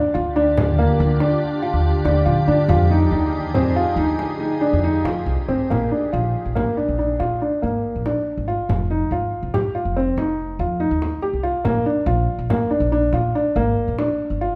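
A felt-muted upright piano plays mellow, intimate arpeggios over woody pizzicato upright bass from the start of this restless, hypnotic contemporary chamber excerpt in 7/4 at 142 BPM, with a frame drum entering at 0.6 s and a bright, organ-like pad of chorused sustained chords holding until 5.7 s, as the harmony moves from Ebmaj9 and Fm9 to Bb7 and resolves toward Bb inside a reverberant recital hall.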